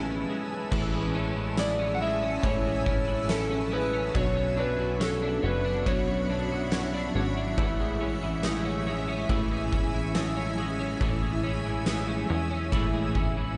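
Softly roomy and dulled at the top, this dreamy, ethereal dream pop excerpt drifts over a blurred granular cloud pad, a compressed twelve-string electric guitar picking arpeggios through ensemble chorus and delay, a clean electric guitar in the background with tremolo and analog chorus, and a punchy, plucky analog bass, with a boomy, gritty, oversized low-tuned drum kit entering at 0.7 seconds and a slightly broken-up electric slide guitar carrying the melody with delay from 1.6 to 7.1 seconds.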